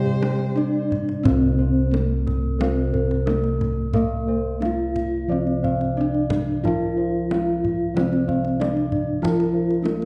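Ceremonial and serene, this piece of Javanese gamelan in C slendro moves at 90 BPM in 4/4 with uneven beats: an airy, shimmering bronze metallophone carries the melody over a wooden-mallet metallophone accompaniment, round, soft bossed-gong arpeggios, a dry, full, close-miked metallophone playing higher arpeggios and warm, beating bossed gongs in the bass, while a deep kendang drives the percussion from 0.1 seconds and a dark violin with vibrato, portamento and slapback echo sounds only in the opening 0.8 seconds, all set in a wet recital-hall reverb.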